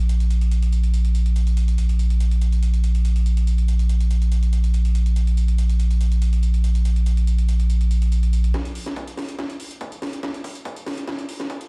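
Relentless, driving peak-time techno cut from a longer piece opens with a deep, saturated sub bass sitting up front with overdrive, sidechain pumping and a low-pass filter, under a techno kit of cracking snare and metallic, pumping hats that runs from 0.1 seconds, until at 8.5 seconds the bass stops and a punchy, high-passed electronic kick joins a drum fill building up to the end, all played through a big system in a bare room with small-room ambience.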